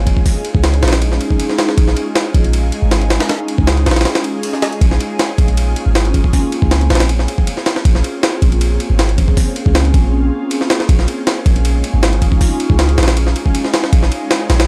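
Drum and bass with a jungle edge, this raw, dark excerpt runs at 158 BPM in a straight 4/4. A deep, boomy 808-style bass with a sine body, a noise layer and a fast, decaying attack sits up front from the start. It is joined at 0.1 seconds by a compressed, pitched-up jungle sampler kit of hi-hat, ride, thumpy kick and high-tuned snare, pushed through overdrive. A brief break at 4.1 seconds interrupts the groove, and the whole recording feels dry and gritty with little reverb.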